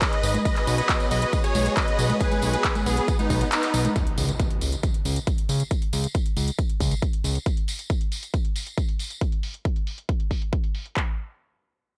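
A bittersweet, driving uplifting trance excerpt opens on a drop where a huge, euphoric supersaw lead with gritty sampler crunch and delay carries the melody over a catchy phased pluck line and a lush, airy pad, all three pumping, backed by overdriven big-room drums with a punchy kick, metallic hats, congas and handclaps plus a jingly tambourine, while a fat, wave-folded analog bass enters at 0.2 s; the kick briefly drops out under a band accent before the leads and pad stop at 3.9 s, and a background electronic impact lands at 4.0 s as the drums, bass and tambourine drive on in a dry mix.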